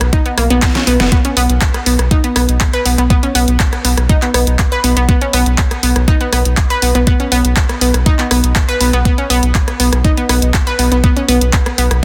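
A dense, heavily limited modern mix with light digital ambience carries this uplifting, hopeful progressive house excerpt at 121 BPM, where an up-front, knocking, overdriven electronic kick and a layered pop drum kit of handclaps, hi-hat, rim click and a deep, overdriven snare, with a fill from 0.6 to 1.1 seconds, drive beneath a round, dark analog bass with sidechain pumping and a bright, detuned analog pluck playing arpeggios through chorus, dub echo and sidechain pumping over a rootless F#add11 chord that lasts until 1.1 seconds.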